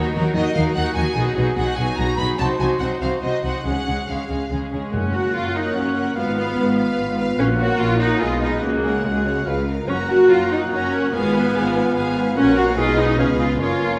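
An up-front viola section carries the accompaniment in this graceful, cheerful classical-period orchestral movement in triple time, with lush, bowed violin sections on melody and second line over rich cellos and double basses, before a close-miked oboe, a dark, distant clarinet, vintage-toned French horns holding sustained chords and a very quiet touch of timpani join at 4.9 seconds in a wet scoring-stage reverb.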